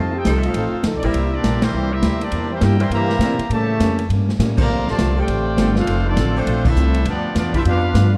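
Big band swing in C major at a brisk 203 BPM, this joyful excerpt features a brilliant trumpet section on the melody over a clear trombone second line, a distant saxophone section holding sustained chords, a picked acoustic guitar with finger squeak in the background, a woody pizzicato upright bass up front, and a smooth, boomy-kicked drum kit, with band accents at 1.6, 4.5 and 6.6 seconds over changes from F7 through A7b9 to G7 in a dark, lightly reverberant mix.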